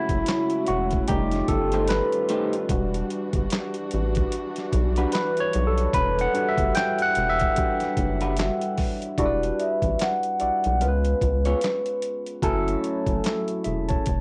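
R&B and neo-soul with a sultry, introspective mood, cut from a longer piece and recorded at home on cassette, where a barky tine electric piano with phaser carries a solo for the first 9.2 seconds over dark, woody strings, a rubbery square bass and a gritty, pitched-down boom bap kit of thumpy kick, snare, hi-hat and handclaps, while a slightly broken-up guitar through a small old amp adds a second line in spring reverb and a mellow soft-mallet vibraphone takes the melody from 9.2 seconds.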